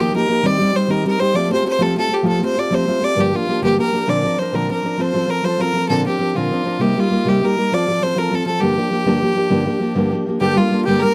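A dry, close 1970s-style studio sound with light reverb frames this spirited, wild Celtic slide in G minor at 132 BPM in 12/8, where an up-front, earthy fiddle with light vibrato and an airy bow carries the melody over a fingerpicked steel-string acoustic guitar with fresh strings and audible finger squeak, until a bright, reedy wooden flute slips in behind them with a second line at 10.4 seconds, just before this cut from a longer piece ends.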